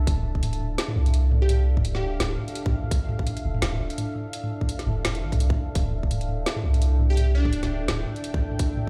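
Heard through a big sound system in a bare room with a large studio reverb and a digital ambience, this tense, dark half-time drum and bass excerpt at 169 BPM in D minor opens straight into a drop over a single D minor chord. A tight electronic kick and a kit of woody snare, metallic hats and toms sit up front with a swung half-time feel, while a deep, mellow sine 808 bass holds long low notes until 8.0 seconds beneath a moody, detuned sawtooth pad with chorus, its own reverb and sidechain pumping. A punchy, catchy unison lead with a filter pluck, vibrato and delay appears briefly at 1.4 seconds and again at 7.1 seconds.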